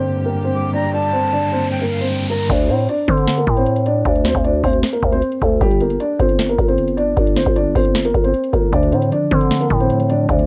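A dark, boxy grand piano carries the melody of this hard-hitting hip hop and trap excerpt over mellow tine electric piano, soft bowed strings in the background, an electronic riser and a filter sweep, with an airy, distant jazz flute adding expressive vibrato from 0.5 s, before a growling, buzzy 808 bass and a booming analog drum machine with deep kick, tonal snare and metallic hats arrive at 2.5 s in a half-time feel, the electric piano returning at 8.7 s, all within a dry, lo-fi home cassette recording.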